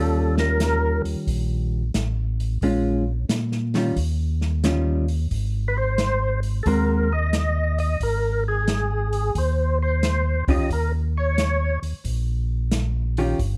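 A fat, lightly overdriven tonewheel organ lead with key click and slow rotary speaker opens this soulful, swinging soul jazz organ trio excerpt alongside a clean, compressed hollow-body electric guitar accompaniment and a round, mellow organ bass line, with an airy acoustic drum kit of hi-hat, boomy kick and snare entering at 0.4 seconds and the lead organ falling silent after its opening moment before returning at 5.7 seconds, all in a dry, dark production.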